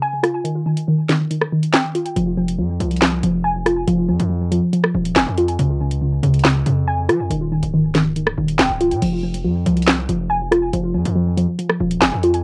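A warbly, dusty pluck leads this dark, menacing drill excerpt from the opening moment, spinning arpeggios with a detuned, ring-modulated bite softened by chorus and analog delay. Drill drums arrive at 0.2 s with a sharp snare, metallic hi-hats, rim clicks, handclaps and crash cymbal, sitting up front in a half-time feel. The opening stretch is a break, and at 2.2 s a distorted 808-style bass drops in, heavy and saturated, with a gritty noise layer under its decaying tones. The harmony moves through Ebadd9, Fm, Db and Ebadd9 again before returning to Fm at 9.0 s, where a new section begins. Worn cassette-tape character and pitch drift give the whole mix a lo-fi wobble inside a modest small-room ambience.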